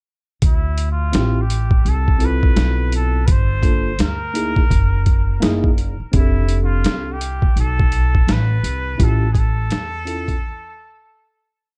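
A dark, warm production with little reverb frames this short, mellow and smoky jazz-hop piece in D dorian, moving at 84 BPM in 4/4 with a swung sixteenth-note feel. A compressed, pitched-down sampler-style kit sits up front, its gritty, thumpy kick and medium-tuned backbeat snare hitting hard in a boom-bap beat alongside hi-hat. Beside it, a woody, growly upright bass walks with pizzicato notes, muted ghost notes and chromatic approach notes, and both parts stop at 10.4 seconds for a brief break. A clean tine electric piano, heard through its built-in speakers with plate reverb, comps freely in rootless voicings with grace notes over chords moving from Dm9 through Gm7, F#13 and F6 to A(b13). Floating at a distance, a nasal, breathy trumpet with straight mute and tape echo sings motif-based phrases with light vibrato and scooped notes, lingering after the rhythm section as the piece fades out by 11.8 seconds.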